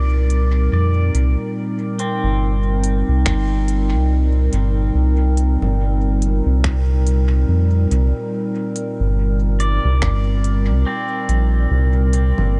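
A lazy 71 BPM swing on 16ths carries this spacious, deep ambient dub fragment in C minor, where a round, dark analog bass sits up front beneath a nostalgic, warbling lo-fi pad of chorused Cm9 chords that turn to Gm at 11.7 s, a bright, twangy pedal steel guitar traces delayed slide arpeggios, and a faint electronic kit of crisp hats, congas and finger snaps, overdriven and thrown into dub echo, is joined from 3.3 s to 10.2 s by a tight, gritty kick, all set in a light digital ambience.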